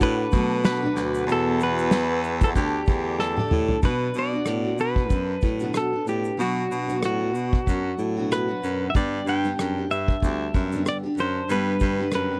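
This carefree acoustic pop excerpt opens with the whole band at once. A twangy, compressed clean electric guitar carries the melody up front, while a double-tracked steel-string acoustic guitar picks out the accompaniment and a bright, close-miked baritone saxophone plays the bass line with vibrato and scooped notes. Behind them, a muted string section bowing con sordino holds dark, veiled sustained chords in the background until 3.8 seconds. An unplugged drum kit played with bundle sticks sits up front, its punchy kick, medium-tuned snare, rim click, shaker and toms giving a lightly swung, easy-going feel, and a drum fill from 3.2 seconds leads into the next section. The harmony moves through Bm7, Esus2 and Dsus4 before settling on Bm and later G, all captured in a dry, close 1970s-style studio sound with little reverb.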